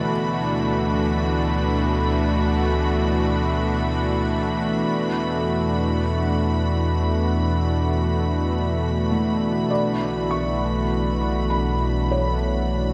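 Ambient music at a slow 50 BPM in D major, this luminous, weightless passage is cut from a longer piece. A smooth, detuned sawtooth pad with a soft attack and chorus sits up front, holding sustained chords that move from D6/9 to E5 and then to Bm9. Beneath it, a round sine sub bass gives a deep foundation, while a very quiet, nasal analog drone with pulse-width modulation and chorus evolves in the background. A distant chamber violin section adds an earthy, bowed ensemble texture with light vibrato high above. A felt-muted upright piano, mellow and intimate with audible action noise and a delay, plays arpeggios briefly at the start and returns at 9.1 seconds. The whole is bathed in a concert hall reverb that lends a spacious, floating sheen.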